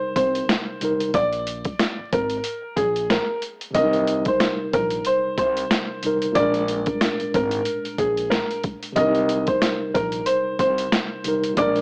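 A smooth, woody upright piano carries the melody up front in this dark, tough boom-bap hip-hop excerpt at 92 BPM in C minor, its short-sustained vintage tone filtered over a worn, slightly out-of-tune tine electric piano that is lightly overdriven and colored by cassette tape. From 0.2 s a pitched-down, compressed sampler-style drum kit hits with a thumpy kick, a high-tuned snare and hi-hat, swung on the sixteenths, while a pizzicato upright bass on gut strings adds acoustic low end with tube saturation. The track sits in a dry, gritty hardware sound with transformer saturation, vinyl crackle and an AM radio tone, cycling between Cm7 and Bb7.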